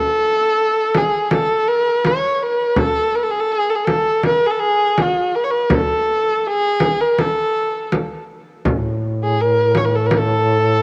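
A warm, bowed kamancheh leads this stately, passionate Persian modal excerpt in A dastgah chahargah at 82 BPM, singing up front with light vibrato and smooth portamento through a cassette-tape tint, while a deep frame drum played with soft hands joins at 0.9 s and a mellow duduk enters at 8.7 s with a scooped, vibrato-touched A2 drone, all set in a lush hall reverb on a homemade cassette recording.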